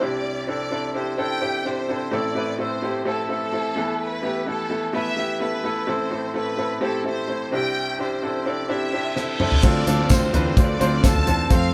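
A brilliant, woody upright piano sits up front in this bittersweet, earnest piano-driven pop piece, under a lush, distant violin section that carries the melody with vibrato, until a very quiet electronic reverse cymbal and downlifter enter at 8.9 s and lead into a drum fill from a dry, damped 70s kit with a fat snare and tight kick, and at 9.6 s a round, punchy fingered electric bass and a faint fingerpicked steel-string acoustic guitar riff join in, with a jingly tambourine in the background and the band sounding live in one room with moderate reverb.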